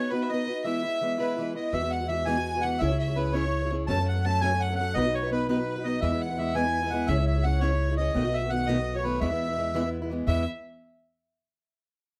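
Celtic folk in the form of a rollicking, lively jig, this excerpt moves at 112 BPM in 6/8 in E major, cut from a longer piece. A reedy, dry accordion carries the melody up front, while a single bowed fiddle with a rich, smooth tone and light vibrato plays a second line in the same register a little further back. A fingerpicked archtop acoustic guitar with a boxy character supplies the accompaniment close in the mix. At 1.7 seconds a woody, plucked upright bass with steel strings joins, anchoring the low end. The chords open on B, then travel from E and Eadd9 through C#m and F#m to B7 before settling back on E, and the close, detailed microphones with light reverb keep every part clear and present.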